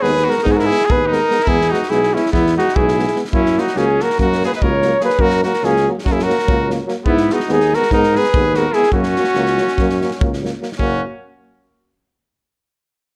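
From the first moment, a soft-attacked, up-front flugelhorn carries the melody of this exuberant, virtuosic Balkan brass band fragment in 9/8, with a brilliant, lightly vibrato trumpet on the second line, a warm trombone with vibrato in the background, a distant, very quiet second trombone filling out the accompaniment, a roomy, warm tuba holding the bass, and a loose acoustic drum kit with a tight kick and medium-tuned snare, the whole mix soaked in a dreamy plate-reverb haze.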